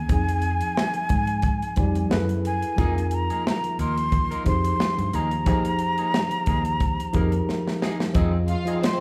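A breathy jazz flute carries the melody up front in this lush 1970s-style soul excerpt, its close-miked, tongued phrasing shaded with vibrato and an expressive edge high in its range. Beneath it, at 89 BPM in F minor with a gentle sixteenth-note swing, a worn, slightly out-of-tune tine electric piano lays down clean, direct chords moving from Fm9 to Gbm11 and settling on Fm11. A dark, round, foam-muted fingered bass and a tight, dry funk kit with a medium-tuned snare, the kit sitting up front, give the smooth, silky groove its pocket, and the drums play a fill at 7.5 seconds. From 2.8 seconds a quieter, twangy electric guitar adds a riff, its tone just beginning to break up. A bowed studio string section slips in at 8.5 seconds with an even, lush second line, all heard as a band playing live in one room with a moderate large reverb.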